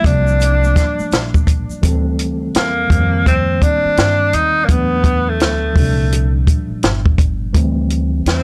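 Nocturnal and smoky, this jazz-hop excerpt moves at 84 BPM in 4/4 with a swung sixteenth-note feel, its 9sus4 chords drifting from C9sus4 through D, F and E and back. A breathy, whispered tenor saxophone takes the lead with vibrato, scooped notes and a soft subtone attack, sounding distant yet intimate, over a mellow, clean tine electric piano heard through its built-in speakers. A woody pizzicato upright bass with tube saturation and a dry, up-front cocktail kit with a high-tuned snare and tight kick anchor the gritty hardware sound, while bright congas and egg shaker sit in the background only until 1.8 seconds.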